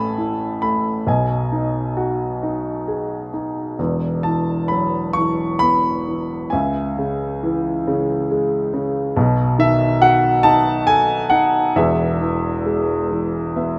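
A present, polished grand piano with long sustain opens this dark, reflective classical excerpt, unfolding a lyrical solo in a flowing rubato lilt over chords that drift from Aadd9 through C#m and B7 to a resting E, set in a moderate recital-hall reverb, before a brief piano fill at 13.1 seconds.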